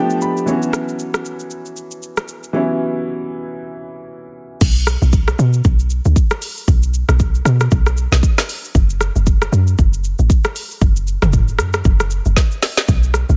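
A swung 116 BPM amapiano groove in 4/4 sets a hypnotic, soulful mood in this excerpt, as an intimate, boxy grand piano with audible action noise opens with a short fill and an F#7sus4 chord before stopping at 4.6 seconds, when a round, percussive log drum bass with a dark, decaying FM tone drops in up front over a layered electronic drum kit of deep kick, woody snare, dark hats, rim click, shaker, toms and crash, which plays a fill at 12.4 seconds, all set in a digital ambience.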